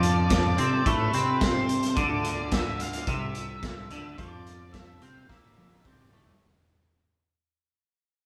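A straight 4/4 pulse at 108 BPM drives this hypnotic, trippy psychedelic rock fragment in D minor, resting on a single Dm chord as the whole passage fades out. A raw garage drum kit with a punchy kick and gritty, saturated sound sits up front beside an overdriven fingered bass, while a twangy, scooped electric guitar plays a riff through a rotary speaker and a dark octave-fuzz lead guitar carries the melody until 6.2 seconds. Beneath them, a bright tonewheel organ holds very quiet sustained chords with chorus vibrato and slow rotary, the band shares a moderate stone room, and the drums close with a fill from 5.3 seconds.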